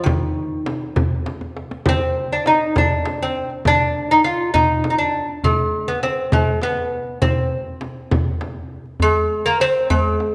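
Longing and melancholic, this fragment of a longer Persian modal ensemble piece moves at 67 BPM in 6/8 in C avaz esfahan, led by a delicate, fingerpicked lute with gut double strings, some doubled at the octave, carrying the melody up front. A deep, close tombak and a small, dry frame drum support it, with a drum fill at 1.3 seconds, and the frame drum drops out at 8.5 seconds, just before the music shifts to a new section at 9.0 seconds. The whole ensemble rings out in a wet recital hall reverb.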